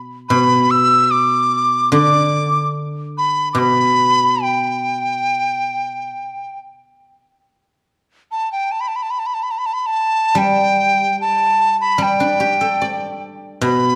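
A silvery, ringing guzheng opens this festive, pastoral fragment of Chinese chamber music, played with fingerpicks as accompaniment, and at 0.3 s a hollow, airy bamboo dizi enters up front with the melody, its buzzing membrane and vibrato carried on a crisp attack. The rubato flow lets both instruments breathe, with a new section arriving at 7.0 s, and a moderate stage reverb and dark production lend the whole a soft, spacious glow.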